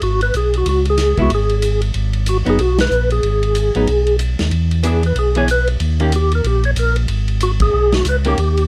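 A dark, dry soul jazz organ trio excerpt in G# minor swings at 187 BPM with a soulful, smoky mood, as a soft, flute-like percussive tonewheel organ carries the melody through slow rotary speaker and chorus vibrato over a round, lightly overdriven organ bass, a distant, roomy drum kit with dark cymbals, and a clean, picked hollow-body archtop guitar comping from 1.2 to 6.1 seconds, with band accents landing at 2.8 and 7.6 seconds.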